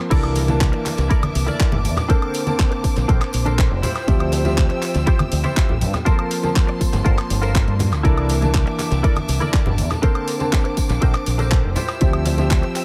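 A dry, echo-heavy mix frames this sleek, sensual nu-disco excerpt at 121 BPM, where a punchy, up-front electronic kick and envelope-filtered fingered bass drive beneath a house kit of crash, handclaps, hi-hat and woodblock, background tambourine and congas, a twangy clean guitar riff with analog chorus and tape echo, a brilliant grand piano carrying 12-bit sampler grit and sidechain pumping, and lush bowed strings sustaining chords such as C13, Bbmaj9, Dm11 and Gm11.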